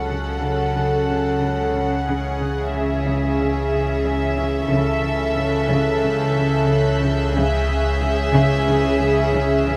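A straight 4/4 pulse at 91 BPM carries this eerie, tense suspense film cue in C# minor, where soft-attack, sul tasto string sections float over a deep, round sine sub-bass drone and a distant, very quiet cello riff. A pure violin section holds the close melody above a dark, intimate violin second line with light vibrato, while mellow French horns sustain chords and background violas, cellos and double basses fill out the accompaniment and bass. At 4.7 s a high, floating violin texture joins, and moderate scoring-stage reverb lends the whole passage a spacious symphonic glow.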